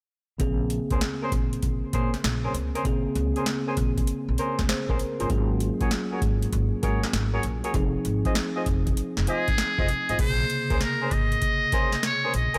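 A swung sixteenth-note groove at 98 BPM in 4/4 drives this confident, slick new jack swing cut, taken from a longer R&B piece in B-flat minor. Up front, a booming analog drum machine pairs a deep kick and crisp snare with metallic hi-hats and crash cymbal, roughened by overdrive and gated reverb. Beneath it, a woody pizzicato upright bass and a clean, bell-like tine electric piano carry the chords, moving from Bbm9 through Ab9sus4 and Fm7 before returning to Bbm9 at 10.2 seconds. A tight, dark horn section with light vibrato punches in with jazz-style stabs from 0.9 seconds. At 9.3 seconds a trumpet with a metal mute takes the melody, its buzzy, breathy, whispered tone sitting intimately close in the light reverb.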